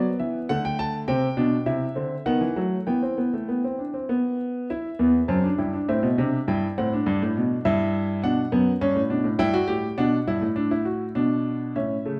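Set in a stone room with a lingering 1.2-second reverb and heard from further back, this lively, joyful passage from a longer classical piece is a baroque-style three-part fugue in E minor at 101 BPM in 3/4. A solo concert grand piano carries all the voices from 0.0 to 12.2 s, spanning E2 to A5, with an intimate, natural tone, deep bass and audible action noise. The harmony moves from Dadd11 through Cadd9 and B/D# to Em, and later turns through Am, Em/G and Bm in the second section from 4.7 s.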